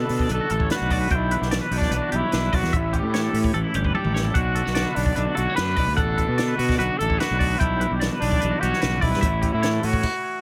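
A bright, echo-heavy mix in a small room with light reverb opens this short cut from a longer math rock and midwest emo piece, moving at 148 BPM in a straight 4/4 with a bright, wistful mood. Up front, a clear, punchy trumpet with vintage character and vibrato carries the solo melody from D4 to B4, its lines trailing into dub echo. Beneath it, a twangy electric guitar plays clean, compressed arpeggios with tremolo and dub echo, while a twelve-string electric guitar sits in the background with bright, twangy, picked accompaniment that also echoes. A fuzz-laden fingered bass, round and overdriven, holds the low end from G1 to B2. A compact cocktail drum kit sounds dry and natural, with dark cymbals, a high-tuned snare and a tight kick, adding a fill at 4.0 seconds before everything but the trumpet stops at 10.0 seconds over a cycle of Bm7, Em7/B and A7.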